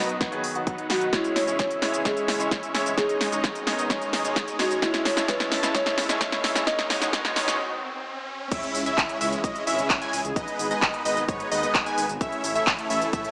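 A straight 4/4 pulse at 130 BPM drives this euphoric, anthemic festival progressive house cut in C# minor, taken from a longer piece. A punchy, tape-warm electronic kick sits under an overdriven, up-front big-room kit of crisp hi-hats, a punchy snare, handclaps, cabasa and crash cymbal, which runs a drum fill through the build-up. Over the B, C#m, G#m and A progression, a woody soft-mallet marimba carries the melody with tape echo while a clear grand piano, pumping against the kick, accompanies in the background, until both drop out at 7.6 seconds. Huge detuned supersaw chords with a low-pass filter, a thick warbling vintage pad and a mellow chorused saw bass fill out the harmony, and a very quiet riser and sub drop enter at 6.2 seconds. After a short break, the drop lands at 8.5 seconds with an impact and a catchy, punchy plucky lead playing arpeggios. The mix sits in a moderate concert-hall reverb with a thin, small-speaker character.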